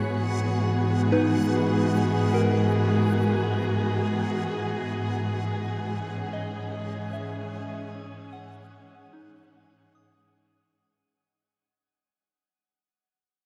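Bathed in a long shimmer reverb with a dark production, this serene, melancholic ambient piece at 75 BPM in G# minor rests on a single G#m9 chord, where a close, up-front string section holds expressive bowed chords with vibrato and portamento, a soft, pure FM synth bell plays decaying arpeggios through chorus and diffuse ambient delay, a calm organ-like drone sits in the background, and a reversed, detuned granular texture swells brightly on F#5, as the recording fades out from 2.6 to 11.2 seconds.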